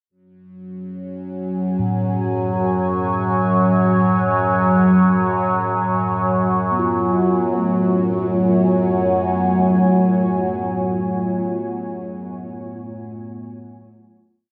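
A deep, detuned pad enters at 0.7 s with slowly shifting chords in F# minor, and a resonant drone with moving overtones joins low beneath it at 1.0 s, both up front and touched with chorus, opening this short, unsettling dark ambient piece in free time. From 1.8 s a pure, ringing quartz singing bowl, close-miked with slow beating, plays meditative arpeggios in three slow loops of unequal length that drift against each other through a diffuse delay. The whole piece settles onto a final chord, its dreamy, cavernous mix soaked in a huge, long reverb.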